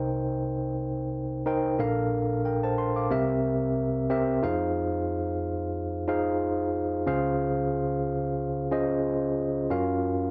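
Nostalgic yet urgent, this short pop fragment cut from a longer piece features a clean, up-front tine electric piano played solo at 91 BPM with a light sixteenth-note swing, heard through its built-in speakers and spanning Bb1 to D6 over chords moving from Cm7 through C7 to a second passage at 4.4 seconds that drifts from Fm7 to Gbmaj7, all captured in a close, dry 1970s-style studio sound with moderate reverb.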